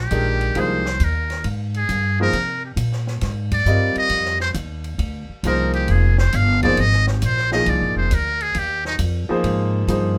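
A muted trumpet leads this short modal jazz excerpt, its metal-muted tone buzzy and thin yet brilliant, with light vibrato, scooped notes and a smooth top as it solos from the outset until about 9.0 seconds. The mood is hypnotic and searching, set in F dorian at 135 BPM in 4/4 with a swung eighth-note feel, resting on a single Fm11 chord throughout. Beneath it, an upright bass plays pizzicato with a woody, thumpy sound from steel strings, sitting up front in the mix. A clear baby grand piano supplies intimate accompaniment, its action noise audible in the natural sound, also up front. A compact cocktail drum kit of hi-hat, kick, ride and snare stays low in the balance, dry and acoustic, with dark cymbals, a high-tuned snare and a tight kick, all in a light reverb.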